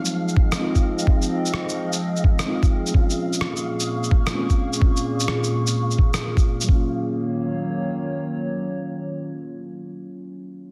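A thumpy, pitched-down electronic kick sits up front at 128 BPM in 4/4 with a 65% swing on the sixteenths, arriving just after a muffled, tape-toned shaker and rim click with a softly clipped snare and a large-room sheen, both dropping out around 6.7 seconds. This melancholic, nocturnal future garage fragment in Eb dorian moves from Fm7 to Bbm7 and then Ebm7. It is carried by a warbling, nostalgic pad with detuned chorus and sidechain pumping, and by muted, felt-like synth keys with 12-bit sampler grit, delay, pumping and a filter sweep through the opening stretch, while a faint, flickering granular texture glimmers far back in reverb until the drums fall away, leaving pad and keys to close out the cut.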